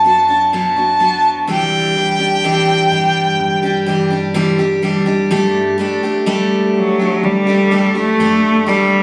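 A bowed cello takes the spotlight in this pastoral acoustic folk fragment, entering at 6.8 s for a solo with a rich, nasal, somewhat boxy tone, expressive vibrato, soft attacks and gliding portamento. Before it, a mellow harmonica carries the melody in a classical style, up front yet roomy and distant, with light vibrato and a gentle attack, until it stops at 4.3 s. A picked dreadnought steel-string guitar, bright and full-bodied with fresh strings, provides accompaniment up front throughout, moving from Bm to Cadd9 and settling on Gsus2. Beneath them, an upright bass is plucked in the background, woody, dark and growly. The recording was captured on a phone in the room, with light studio reverb and compression, and it is cut from a longer piece.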